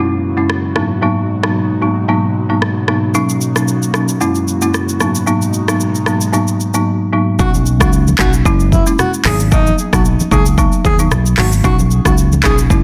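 Densely limited and lightly reverberant, this breezy, joyful afrobeats excerpt at 113 BPM in B major opens with a woody, dry folk marimba and an airy, detuned pad with chorus, joined at 0.5 seconds by an up-front electronic drum kit with deep kick, crisp hats, handclaps, rim click, shaker and a soft-clipped snare, before a punchy fingered electric bass, very quiet ringing congas and a breathy alto saxophone melody with vibrato and tape echo arrive at 7.4 seconds as the pad drops out.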